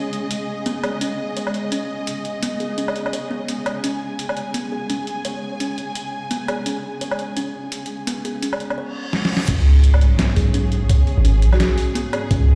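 Half-time drum and bass at 170 BPM, dark and tense, cut from a longer piece. It opens with lush, bowed strings pumping under sidechain and a woody kalimba playing arpeggios through a low-pass filter and dub echo, over gritty, tape-warm sampler drums of hi-hat, medium-tuned snare, woodblock and crash. A filter sweep on the drums, a drum fill, and a background reverse cymbal and sub drop lead into the drop at 9.5 seconds, where a deep, up-front sine 808 bass and a thumpy background kick arrive. A single percussive rosewood marimba note echoes at 11.5 seconds, all within a stone-room ambience.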